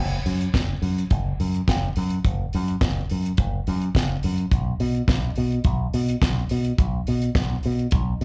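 The rhythm sits in a straight 4/4 at 106 BPM, a danceable, glamorous disco groove cut from a longer piece and lasting about 8.2 seconds. A picked electric bass opens alone at 0.0 seconds, bright and punchy through an envelope filter, ranging from F#1 to B2 with a direct, amped tone placed up front. A damped 70s drum kit joins at 0.3 seconds with hi-hat, kick drum and snare drum, sounding dry and mid-forward with a fat snare and a tight kick, also up front in the mix. The performance comes from a live gig heard through the venue's PA, carrying a light club reverb that gives the pair a sense of the room. Tuned slightly low at A4 = 438 Hz, the whole passage stays within a single section of bass-and-drums drive.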